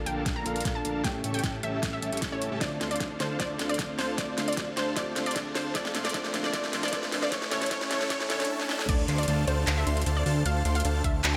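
Future bass in D minor at 153 BPM with a half-time feel, this dreamy, lush excerpt builds for 8.9 seconds over a bell-like tine electric piano, a breathy, warbling pad, a huge supersaw riff under a filter sweep, a fat saturated analog bass, a punchy unison pluck melody with tape coloring and digital delay, a very quiet riser and swell, a dubstep kit with a huge snare and metallic hats, and a knocking electronic kick. The piano, supersaw, bass and pluck pump with sidechain, and everything sits in a lush hall reverb until the drop at 8.9 seconds brings in a soft, chorused arpeggiated lead over Dm7, closing a progression that moves through Bbmaj7, A7 and Dm7.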